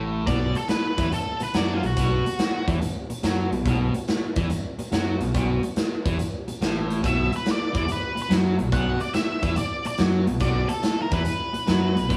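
A bright, double-tracked distorted electric guitar riff opens this heavy, gritty blues rock power trio cut with a southern rock edge, joined at once by a growling fingered electric bass, overdriven and amped, on a B5 chord in B minor. The big acoustic rock kit arrives at 0.3 seconds, sitting up front with a punchy kick, medium-tuned snare and hi-hat, driving a swung 4/4 groove at 142 BPM. Also from 0.3 seconds, a dark octave-fuzz lead guitar sings a picked melody high above the riff, drops out at 2.7 seconds, and returns at 7.1 seconds to carry on to the end. The trio sounds like a band playing live together in a small stone room with a moderate reverb, while the kit itself has a big-room character. The clip is cut from a longer piece.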